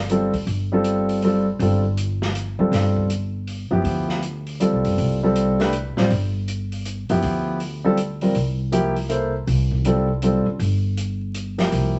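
Modal jazz in a hypnotic, spiritual mood at 160 BPM in a swung 3/4, this excerpt opens on G9sus4 in G mixolydian and shifts to C7sus4 and C mixolydian at 8.3 s, with an intimate, vintage-sounding concert grand piano up front carrying the accompaniment with deep bass and audible action noise, a woody, pizzicato upright bass also close in the mix, and a softer, dark, small-room drum kit of hi-hat, medium-tuned snare and boomy kick, all set in moderate studio reverb with vinyl crackle and a dulled top end.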